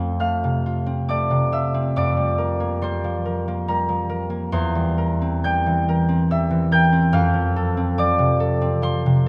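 Graceful and peaceful, this short classical passage for solo concert harp is taken from a longer piece and unfolds in an unhurried 3/4 at about 70 BPM, with a rubato feel that lets the pulse breathe. Set in F major and tuned to A4 = 445 Hz, the harp is the only voice, playing from 0.0 to 9.3 seconds across a range from E2 up to G6. Its fingerpicked tone is acoustic, warm and ringing, and it sits up front in the mix. The harmony moves gently from F through Gm7/F and C7/E before settling back on F at 7.2 seconds. A wet church reverb with a 3.6-second decay surrounds the instrument, giving the passage a spacious, resonant glow.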